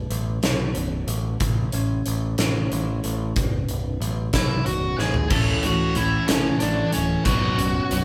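Recorded as a band playing live in one room with light reverb, this excerpt of dark, cathartic quiet-loud alternative rock moves at 61 BPM in 6/8 over B5, A and Bsus2 chords. A warm, picked steel-string acoustic guitar plays arpeggios over a bright, overdriven, growling electric bass and a huge arena drum kit with a fat snare and punchy kick, while an up-front octave-fuzz lead guitar carries the melody from 4.3 seconds. After a drum fill, the heavier section hits at 5.3 seconds, where a high-gain distorted guitar in the background and a very quiet thick fuzz guitar join on the riff.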